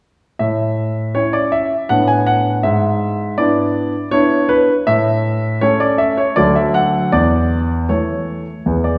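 In a straight 3/4 at 80 BPM, this elegant, playful classical-period sonatina in A major is carried by a solo grand piano that sounds clear, present and polished, playing from 0.4 to 9.0 seconds across a range from D2 to G#5. The harmony moves from A through Bm7/A and E7/G#, returns to A, then passes to D and A/E. The piano sits up front against a wet recital hall reverb with the room heard from further back, in a brief passage cut from a longer piece.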